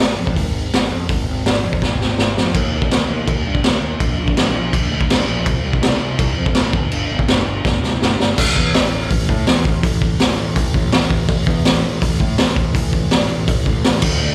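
Captured live through a club PA with a touch of room reverb, this energetic, rebellious punk rock cut pairs a raw garage drum kit with a picked electric bass. The drums sit up front, gritty and saturated with a punchy kick, a high-tuned snare and a rolled-off top, and they burst into short fills at 1.8 and 7.6 seconds. Underneath, the bass snarls with bright, growly overdriven fuzz, driving straight through the section changes until it stops at 14.3 seconds.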